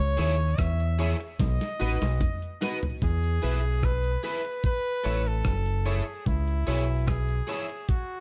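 A straight 4/4 groove at 74 BPM drives this sunny, uplifting roots reggae excerpt in E major, with a gritty, compressed sampler-style drum kit up front, its thumpy kick, medium-tuned snare, hi-hat, rim click and toms building a fill from 1.4 to 3.0 seconds. A deep dub fingered electric bass sits equally forward, dark and round. A twangy, slightly broken-up picked electric guitar carries the accompaniment through analog chorus and tape echo. Beside it, a woody upright piano plays stabs with an intimate tone and audible action noise. Over the top, a clear, present flugelhorn sings a pop-style solo melody with tape echo, running until 8.2 seconds, as the chords move from C#m through B into a new section on E, then A, and back to C#m, all within a light reverb.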